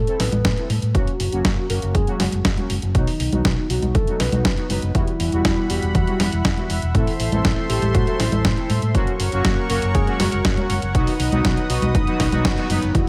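Nostalgic and bittersweet, this italo disco excerpt moves at 120 BPM in a straight 4/4, cut from a longer piece. A punchy, tape-touched electronic kick and a clean 12-bit drum machine, with a fat, up-front snare, hi-hat and congas, drive the groove, while a dark, round fingered electric bass holds down the low end. Bold, brassy analog synth stabs with chorus punctuate the chords as a filter sweep runs across the polysynth, and a soft octave-layered lead carries the melody with vibrato, delay and a vintage 12-bit sampler grit. A smooth analog pad joins at 4.9 seconds with sustained chords, and a warbling, dusty pluck with cassette-tape character slips in at 12.9 seconds just after a band accent at 12.4. The harmony cycles through Am, F#, B and Emadd9 under a light reverb, giving the whole a mellow, retro glow.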